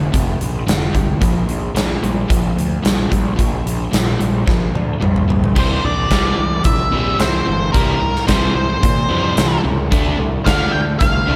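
A straight 4/4 groove at 110 BPM drives this brooding, swaggering classic rock cut, with a huge arena drum kit up front, its punchy kick, medium-tuned snare, bright cymbals and toms filling out a hall-like space. Two picked overdriven guitars sit in the background playing the riff, one crunchy and one biting with slapback echo, over a growly fuzz-soaked electric bass, as the chords move from F5 and Bb5 toward C and Dm. After a drum fill at 4.5 seconds, a dark, distorted octave-fuzz lead guitar steps up front with the melody at 5.6 seconds, all set in light reverb and small room ambience.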